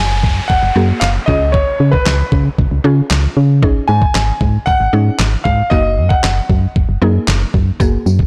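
A blown-out, overdriven and nearly dry recording carries this driving, bittersweet dance-pop excerpt in Eb minor at 115 BPM, where a brilliant concert grand piano plays the melody until 6.6 seconds over a woody, chorused mallet-like synth pluck and a punchy, round FM bass, both pumping with sidechain, while an electronic downlifter sounds until 3.6 seconds, a gritty sampler-style soul drum kit with a thumpy kick, fat snare and handclaps comes in at 0.2 seconds, and a jingly tambourine appears briefly near the end.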